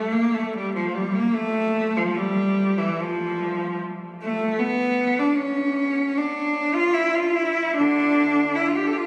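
Rubato phrasing at 75 BPM in 4/4 shapes this lonely, meditative classical fragment in D minor, where a single bowed cello plays solo from 0.0 to 9.0 seconds, sitting up front with a clear, intense tone, an airy bow and vibrato across a span from D3 to A4, all bathed in a long cathedral reverb and captured on a phone in the room.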